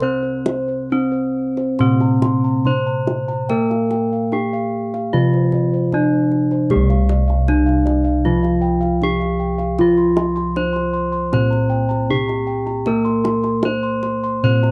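Javanese gamelan in C slendro at 66-78 BPM, serene and shimmering and cut from a longer piece: an up-front bronze metallophone struck with a horn mallet carries a bright, ringing melody over a lower metallophone played with a wooden mallet, while bossed gongs weave round, beating arpeggios up high and a close-miked, dry, full bass line below, and a tight kendang sits in the background, all captured in a 1970s-style studio sound that moves into a new section at 6.7 s.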